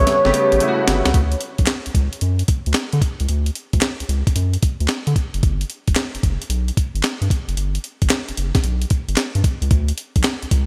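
Bright digital production in the 1980s style, bathed in a lush hall reverb, gives this flirty, upbeat new jack swing cut a glossy sheen at 112 BPM in 4/4, with a strong swing on the sixteenths and tuning set slightly low at A4 = 438 Hz. It opens on an A9 chord, where a bold, retro octave-doubled lead with chorus, delay and vibrato sings a brief C#5 melody, a clear, polished baby grand piano lays down accompaniment, and a very quiet, shimmering pulse-width pad holds sustained chords beneath them. A gritty, compressed breakbeat sampler-style kit comes in at 0.1 seconds with a drum fill of thumpy kick, medium-tuned snare, hi-hat and handclaps, sitting up front for the rest of the piece. The pad, lead and piano drop away by 1.2 seconds, leaving the round, deep analog bass, dark and nasal with a fast attack, to carry the groove with the drums through the rest of the piece. The harmony moves from Dmaj7 at 1.1 seconds to Gmaj7 before returning to D as the cut ends.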